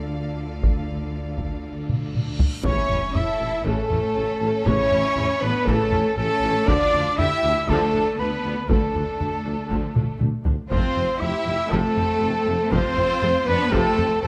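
Heroic and majestic, this cinematic orchestral excerpt opens with a lush string body of smooth violins carrying the melody over darker second violins, rich violas, focused cellos and double basses, dark distant French horns holding chords, and close, dry taiko drums, until a huge, bright reverse cymbal from 2.2 seconds and an impact at 2.6 seconds bring in a pure silver flute line, mellow trumpet stabs and a close-miked tuba bass beneath a light reverb.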